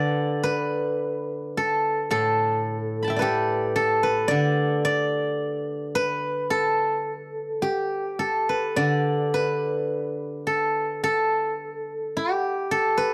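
A silvery, ringing steel-string zither plucked with fingerpicks plays alone and up front in this elegant, flowing fragment of Chinese traditional solo music in the D zhi mode, moving freely in rubato around a slow 54 BPM in 2/4 across a range from A2 to B5, captured in a dry, close 1970s-style studio sound and cut from a longer piece at 13.1 seconds.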